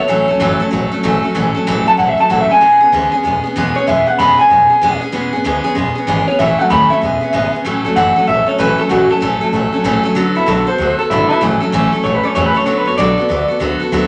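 A twangy, slightly broken-up electric guitar through a small old amp carries the melody up front in this retro, upbeat rockabilly cut with swung eighth notes, stepping into a clean solo at 7.7 s as the second section begins. Beneath it, a full-bodied steel-string dreadnought with fresh strings is picked as accompaniment, also up front, while a woody, thumpy pizzicato upright bass with gut strings sits lower in the mix. A moderate large studio reverb gives the parts a sense of space, and the recording is cut from a longer piece.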